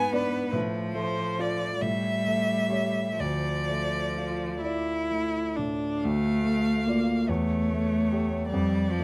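A rich, focused violin with vibrato sings the melody up front in this solemn, melancholic excerpt from a slow romantic piano-trio movement in D minor, moving in a rubato 6/8 at about 41-50 dotted-quarter beats per minute, while a clear, smooth cello with vibrato carries an even second line and a concert grand piano with deep, natural bass supplies the accompaniment, captured through close, detailed microphones with light reverb as the music moves into a new section at 6.0 seconds.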